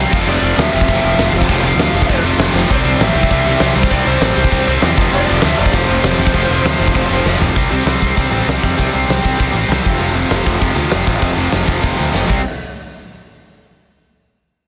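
Up front, a big rock drum kit with a fat snare and punchy kick in a bright stone room drives this rebellious, energetic punk rock excerpt at 197 BPM, with fills at 2.5 and 7.2 seconds, under two bright, overdriven picked guitars riffing in the background on F5 and C power chords. A fuzz-laden picked electric bass adds a punchy, overdriven low end, while a lo-fi lead guitar through a small cranked amp carries a high melody until 7.3 seconds. Light reverb and a dense, heavily limited modern master keep the sound tight and loud before the band cuts out at 12.4 seconds.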